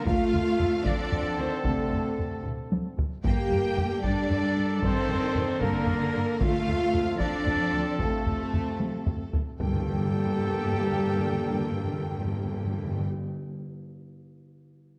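A dark, reverberant scoring-stage sound frames this dramatic, relentless cinematic piece in 6/8. A lush violin section carries the melody over a second violin line paired with an airy concert flute, very quiet violas, tight French horn chords, distant trombone chords and mellow trumpet stabs, all resting on a bass of smooth cellos and focused double basses. Close, dry taiko drums drive the rhythm with fills at 2.4 and 8.8 seconds, while timpani strike at 3.2 and 6.4 seconds before taking the close from 9.6 seconds.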